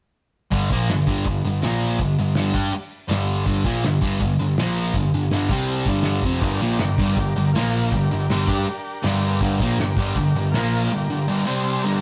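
A bright, double-tracked fuzz guitar riff sits up front in this raw, gritty garage rock excerpt in G minor at 162 BPM, backed by an amped picked electric bass and a cloth-damped, thuddy drum kit with a fat snare and tight kick. From 6.4 seconds a buzzy vintage combo organ adds sustained chords with heavy vibrato, closing on a brief fill at 11.6 seconds, while the bass and drums stop shortly before the end. The take has a rough rehearsal-room sound in a moderate stone room.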